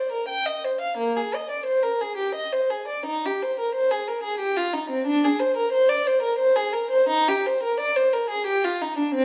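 Heard from further back in a reverberant stone room, this 9.2-second fragment of a longer baroque-style suite movement for unaccompanied violin in Eb major flows in a radiant, rubato 3/4 at 88 BPM, as a single up-front bowed violin with a dark, smooth-topped tone sings expressively between Bb3 and G5 with vibrato, soft attacks and gliding portamento.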